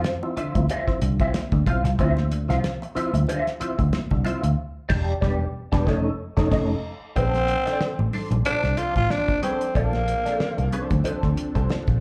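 A growling, breathy tenor saxophone takes the melody up front from 7.2 seconds in this hypnotic 93 BPM funk excerpt, riding a dark, foam-muted picked bass and a thuddy cloth-damped drum kit with quiet high-tuned congas, while a slightly broken-up wah guitar comps and a percussive tonewheel organ with key click and fast rotary speaker stabs through Dm9 and a band accent before a silky, phased string machine settles in behind on Bbmaj9, all heard as a live gig through a club PA.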